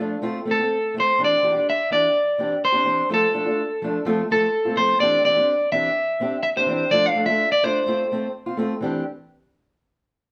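Highlife in C major at 126 BPM with a sunny feel, this cut from a longer piece sets a slightly broken-up electric guitar melody, up front with spring reverb, from 0.5 to 8.3 seconds over a dark, boxy fingerpicked parlour acoustic guitar accompaniment, cycling through F, Cadd9 and Dm in a lightly reverberant room where the band plays live.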